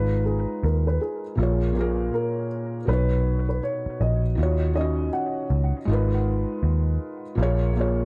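A foam-muted electric bass sits up front with a round, amped tone, anchoring this hazy, melancholic lo-fi hip hop excerpt at 80 BPM with a swung 16th-note feel in G# dorian. A felt-muted upright piano, intimate with audible action noise, carries the accompaniment through chords moving from G#m6 to A#m7, Bmaj9 and D#m9, while a woody, boxy upright piano plays the melody through dub echo until 5.5 seconds. A spring reverb and echo-heavy mix give the whole a dim, smeared atmosphere.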